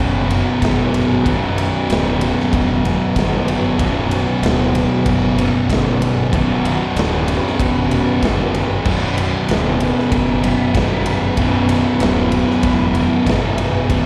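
A straight, steady 4/4 pulse drives this sludgy, heavy stretch of stoner and doom metal, cut from a longer piece and sitting on a single B minor chord for all of its 14.1 seconds. A big acoustic rock kit comes in at 0.3 seconds, with a punchy kick, a medium-tuned snare, and bright crash and ride cymbals ringing in a large room. Two picked fuzz guitars grind out the riff low in their range: the thick one is dark and up front, while the other sits in the background with a warmer tone. Beneath them, a fingered electric bass, heard both direct and through an amp, adds an overdriven, growly weight. Far back in the mix, a very quiet phased string machine holds sustained chords with a swirling, warbling vintage shimmer, its soft attack and long release blurring the edges. The whole performance comes across as a live gig heard through the venue's PA, with a light, recital-hall reverb around it.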